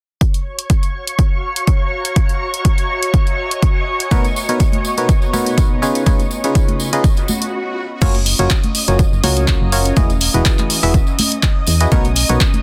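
A steady 123 BPM pulse with a light 16th-note swing drives this uplifting, joyful piano house excerpt in F# major, where an overdriven, up-front kick and punchy analog drum machine crash, claps and hi-hat open at 0.2 seconds under a silky, pumping string pad, joined at 1.1 seconds by an ethereal, detuned airy pad, before a biting, percussive FM electric piano riff with 12-bit grit and dub echo arrives at 4.1 seconds alongside bright, close tambourine and congas, and after a brief electronic swell and stop, a round, mellow FM bass joins at 8.0 seconds over lush chords such as F#maj7, Bmaj9 and Emaj9 in a dense, heavily limited, dry mix.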